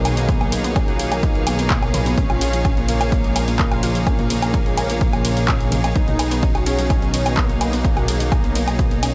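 A punchy analog drum machine of handclaps, hi-hat, ride cymbal, toms and woodblock opens this melancholic, hypnotic melodic techno excerpt at 127 BPM in straight 4/4. Moments later a punchy, tape-warm electronic kick joins it, over a deep, rumbling detuned saw bass pumping with the sidechain. Chords move from B to Bbm at 2.2 seconds and back to B at 6.0, carried by a very quiet, smooth analog pad and a rich bowed string section, while a warbling, lo-fi pluck spins arpeggios through lush chorus and tape echo. In the background a thick, nasal unison lead with vibrato sings the melody, pumping and echoing too, and the track has a dry, gritty hardware sound with digital ambience, tuned to A4 = 439 Hz.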